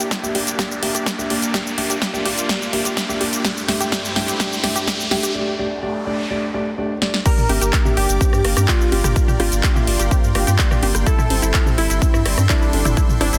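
A bittersweet, expansive progressive house excerpt at 126 BPM in G dorian opens on a build-up: a lush supersaw pad holds sustained chords in the background while a detuned unison pluck arpeggiates alongside, both pumping against the sidechain. A dark, intimate concert grand piano adds stabs with audible action noise and delay, a filter sweep running across it through the build, as a riser climbs alongside a big-room dance kit with a punchy, softly clipped snare, metallic hats, claps, shaker and crash, plus an up-front electronic kick. The drum fill and riser give way to a break at 5.4 seconds, where a noise sweep carries the tension until the drop lands at 7.3 seconds. There a catchy, sawtooth unison lead takes the melody with delay, shadowed by a very quiet FM bell line with chorus and phaser, while a thick, saturated sub bass pushes up front and a tape-flavoured analog drum machine adds congas, toms and rim clicks in the background. 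The harmony rocks between Gm and Am7/G under light digital reverb, all pressed into a dense, heavily limited modern master.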